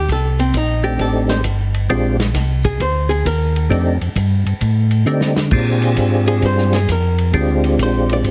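A hollow-body archtop guitar opens this greasy, bluesy soul jazz organ trio, its dark, clean, picked tone sitting up front and compressed as it solos over a mellow tonewheel organ playing the bass line through a slow rotary speaker with audible key click. The tempo is a swung 132 BPM in 4/4, and the harmony alternates between a rootless F13 and Bb13. At 0.8 seconds a second tonewheel organ enters with the melody, its round, percussive tone coloured by third-harmonic percussion, chorus vibrato and the same slow rotary. The acoustic drum kit sounds distant and roomy, with dark cymbals, a medium-tuned snare and a tight kick, and it plays a short fill at 5.1 seconds. Light reverb and a heavily compressed, radio-like sound colour this brief cut from a longer piece.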